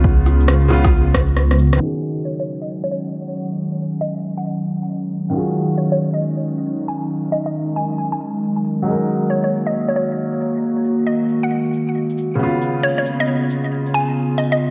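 A ghostly, nocturnal future garage excerpt opens on a soft felt-muted upright piano with audible action noise, a warbling, nostalgic tape-like pad and a deep, rumbling detuned saw bass, all three pumping against the sidechain, while a punchy layered kick plays until 1.3 seconds. After a drum fill and band accent, the bass drops away at 1.8 seconds, and the swung rim click and shaker carry on beside the piano and pad. A hollow, bouncy square pluck with chorus and tape echo enters at 2.3 seconds over filter sweeps on the piano and pad, all in a dark production with a lush hall reverb and vinyl crackle.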